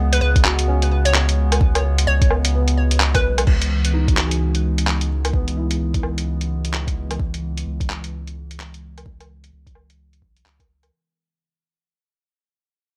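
Light reverb and bright, 1980s-style digital production frame this wistful, nocturnal future garage excerpt at 129 BPM, swung in C# minor and moving from G#madd9/C# to C#m7 at 3.5 seconds, where a fade-out begins. A soft felt-muted upright piano with audible action noise and digital delay plays accompaniment until 7.2 seconds beside a warbling, detuned tape-like pad with 12-bit sampler grit and chorus, both pumping with the sidechain, as does a round, deep sub bass, while a hollow, bouncy square pluck with ring modulation and a filter sweep carries the melody until 3.5 seconds. Muffled, pitched-down sampler drums with crash cymbal, handclaps, hi-hat and woodblock sit up front in a small room, joined by an overdriven electronic kick.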